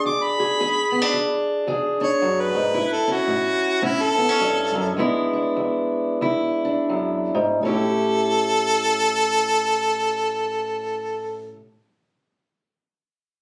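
A clear, close-miked harmonica leads this swaggering, laid-back acoustic country blues fragment with light vibrato, scooped notes and a jazz-style solo up front, over a dark, boxy fingerpicked parlour steel-string guitar that shifts between E7 and A7 chords, the swung 4/4 pulse slowing from 2.7 to 7.6 seconds in a phone recording with light club reverb.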